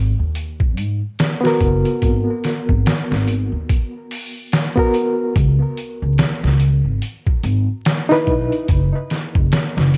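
A woody, plucked upright bass sits up front in this cinematic, melancholic trip hop excerpt at 72 BPM, with swung 16ths and saturated lows. It is joined almost at once by a gritty, pitched-down sampler drum kit with a thumpy kick, medium-tuned snare and hi-hat. A reedy electric piano with fast tremolo and tape echo plays from 1.4 to 8.7 seconds over a move from G#m7 to C#m7 at 5.4 seconds, all wrapped in light reverb, worn cassette warble, vinyl crackle and drifting pitch.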